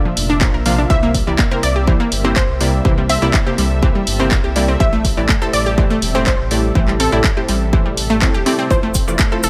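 A straight 4/4 pulse at 123 BPM drives this hopeful, expansive progressive house excerpt, with a punchy, tape-warm electronic kick sitting up front from 0.4 seconds and a layered house kit of handclaps and hi-hat arriving at 0.2 seconds. A deep, rumbling detuned saw bass enters at the same moment, its dark beating tone pumping with sidechain, while a thick, warbling vintage pad holds sustained chords in the background through chorus and sidechain pumping. Over this, a round analog pluck spins chorused arpeggios with tape echo, and two lush unison plucks share the upper layers: one carries the melody between G4 and E5, the other fires bright, punchy stabs with a filter sweep and tape echo. The harmony moves from Bb to C7, settles on Am7, and turns to Fmaj7 as a grainy acoustic cabasa slips in at 8.7 seconds. A light reverb gives the mix a sense of space, though the drums carry the close character of a small room.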